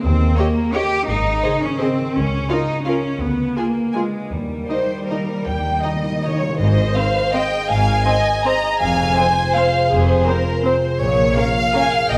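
Ringing, thumb-plucked harp arpeggios open this festive, sweeping excerpt of an orchestral ballroom waltz in Ab major, over clear cellos up front and rich, even double basses. From 0.4 seconds a focused, close violin section carries the melody at a rubato 150-182 BPM in 3/4, supported by a second violin line and expressive violas, all bowed with vibrato. Articulate hard-mallet timpani add a fill from 4.3 seconds, and a wet scoring-stage reverb surrounds the orchestra.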